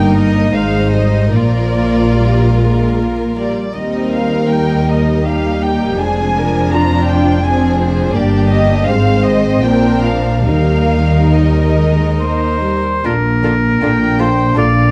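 This slow, lyrical classical movement opens at 0.0 s with a chamber string ensemble in Eb major, moving in a rubato 3/4 between 68 and 86 BPM. A violin section carries the melody with a smooth top and light vibrato, while a second violin section plays an intimate second line beneath it and dark violas supply the accompaniment. Warm cellos and dusky double basses share the bass, and all the strings are bowed sul tasto with a close, chamber sound. At 12.2 s a clear, up-front solo oboe adds another second line, and at 13.1 s, as the harmony settles on Bb, a mellow, tight French horn section enters with sustained chords. A moderate recital hall reverb surrounds the ensemble, vinyl crackle sits under the sound, and the passage is cut from a longer piece.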